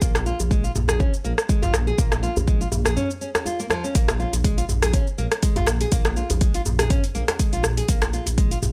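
A driving 122 BPM groove with a light 16th-note swing opens this warm afro house excerpt in Bb minor pentatonic, where a deep, up-front electronic kick and an afro-pop kit of metallic hats, rim clicks, shaker and toms meet a tight, cracking djembe entering at 0.2 s, a rumbling, detuned saw bass pumping on Bb1 under a Bb7(no3) chord, and fingerpicked nylon-string guitar arpeggios carrying tape echo and sidechain pumping, captured in a dry, gritty recording with digital ambience and a brief break at 3.0 s.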